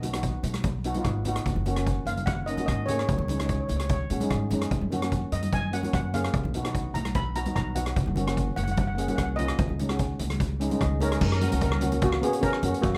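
Festive and sunny, this calypso excerpt moves at 148 BPM in a straight 4/4 in F# major, cut from a longer piece. Two double-second steel pans played with medium rubber sticks carry the music, one taking the melody from A#3 up to B5 with a plate reverb adding an airy, shimmering sheen, the other supplying accompaniment beneath it. An upright bass with steel strings gives a woody, thumpy pizzicato foundation, while a street-band drum kit sits up front with a boomy kick, rim clicks, hi-hat and dark, rolled-off crash cymbals in a small-room sound. Ringing, medium-tuned congas stay in the background of a live room, and light reverb rounds out the whole. The harmony cycles through B, F#6, C#sus2 and F#, and a steel pan fill at 10.6 seconds leads into a new section at 11.2 seconds that lands on F#.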